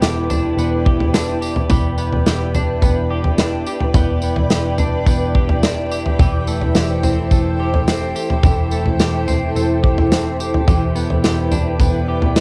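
A haunting, hazy dream pop excerpt in E minor moves at 107 BPM in a straight 4/4, cut from a longer piece and running about 12.4 seconds. A granular cloud pad holds sustained chords throughout, its blurred, evolving tone carrying slow attack, long release and its own built-in reverb, all softened by cassette tape. Beneath it a twelve-string electric guitar plays clean, compressed arpeggios colored by subtle chorus, tape echo and cassette tape, while a dark, foam-muted picked electric bass sits round and punchy on E1. Set up front in the mix, a loose indie drum kit in a small room brings a tight kick, medium-tuned snare, tambourine and toms through a cassette haze. The harmony rests on Em7, shifts to Am7/E at 6.2 seconds, and returns to Em7 at 10.7 seconds, all captured as a home recording on cassette with light studio reverb.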